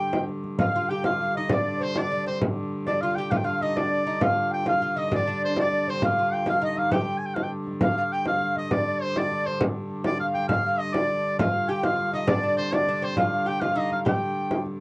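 A bright, punchy shawm with light vibrato and scooped notes leads this driving, ancient-sounding medieval dance in 6/8 at 134 BPM, joined by a breathy, mellow tenor recorder in the background, a delicate fingerpicked gut-strung lute that drops out from 7.2 to 11.4 seconds, a nasal, reedy hurdy-gurdy drone and a small frame drum struck with hard hands up front, all set in a moderate booth ambience with a dark production on this excerpt cut from a longer piece.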